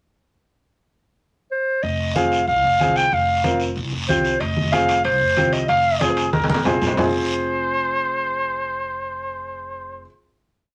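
A moderately reverberant studio sound carries this driving, passionate cumbia in F minor at 187 BPM, where a warm, up-front clarinet states hook phrases over woody pizzicato upright bass, bright low-tuned congas, raspy guiro and brilliant upright piano chords with audible action noise, ringing timbales join at 4.4 s, and a clear trumpet with vibrato plays answering phrases in the melody's rests as the second line from 6.0 s into the final chord.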